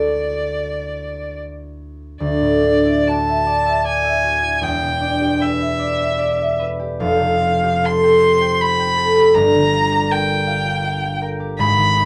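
Luminous and dreamy, this impressionist classical excerpt for violin and harp moves in a rubato 3/4 at 67-82 BPM, tuned to A4 = 442 Hz, with a smooth, clear bowed violin singing the melody with vibrato between D5 and C6 over a bright, ringing fingerpicked concert harp spanning E1 to G5. Both instruments sit up front in a dark production with light reverb, shifting into a new section at 2.2 seconds as the harmony drifts from Dadd9 through Em7 and Fadd9 to Gm7.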